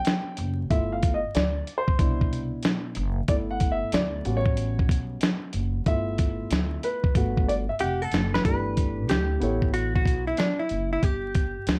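A relaxed 4/4 groove at 93 BPM opens this smooth jazz-hop excerpt, swung at 65% on the 16ths, with a dusty soul sampler-style drum kit of gritty 12-bit character, a thumpy kick, a fat snare and hi-hat, compressed and re-recorded in a large room. The dark concert grand piano sits up front with a mellow, vintage tone, deep bass and short sustain, carrying a solo passage over lush chords such as A13, G13 and Cmaj9 in G major, tuned to A4 = 436 Hz. A pizzicato upright bass adds a woody, acoustic low end, and a drum fill leads into the second section at 8.4 seconds. At 7.8 seconds a clean, picked hollow-body jazz guitar enters up front with a dark, compressed melody, while the piano drops out at 10.5 seconds. Light reverb, vinyl crackle and a dark production give the whole piece a hazy, late-night feel.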